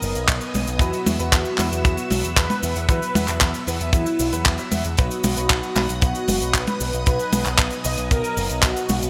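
A bright 1980s-style digital production set in a moderate, lush hall reverb carries this bittersweet, melodramatic italo disco excerpt at 115 BPM, where a dark, detuned synth brass melody with vibrato and tape-worn delay sits over a sawtooth string machine with phaser, worn baby grand piano stabs in the background, a round, punchy picked bass through an envelope filter and tube saturation, and a tight, up-front funk kit of hi-hat, handclaps, cabasa and toms with a kick drum entering at 0.3 seconds, all moving from B to Esus2 and back to B.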